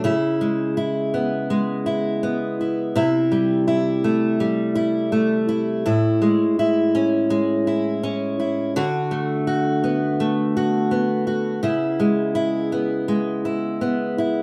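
A straight, unhurried 4/4 pulse at 83 BPM carries this laid-back, dreamy indie pop excerpt, where a lone fingerpicked steel-string acoustic guitar, up front and auditorium-bodied, drifts through C#m7, C6, Amaj7 and D6 with lush chorus and a warbly pitch wobble, set in a wet studio reverb with the rough charm of a home demo.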